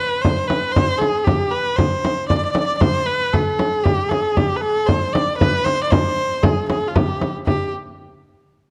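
A rich, focused erhu carries the melody up front, one bowed player moving between F4 and D5 with vibrato and portamento from the opening until 7.7 seconds. A close, dry acoustic frame drum joins at 0.2 seconds, giving this soulful, hypnotic Arabic maqam ensemble piece its pulse in a straight 3/4 at 116 BPM, tuned to A4 = 444 Hz. The dark, warm production sits in a moderate recital-hall reverb, and the passage is cut from a longer piece.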